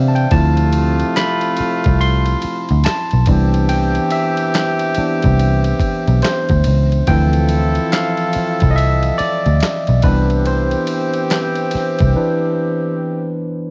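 Dry, close and lo-fi, this short excerpt has the character of a home cassette recording with little room sound. It is late-night, soulful R&B in a neo-soul vein, with a swung sixteenth-note feel over chords that alternate between Dm9 and Cmaj7. Up front, a barky tine electric piano, bright and lightly overdriven through a combo amp, takes a solo across the whole clip while also carrying the accompaniment. Also up front is a vintage muted picked electric bass, dark, round and amped, while a dusty sampler-style kit of thumpy kick, medium-tuned snare, ride cymbal and handclaps sounds compressed and gritty. A warm horn section in jazz style adds ensemble stabs with light vibrato and a smooth top. At 12.1 seconds the bass and drums drop out for a break, leaving the electric piano and horns to carry the close.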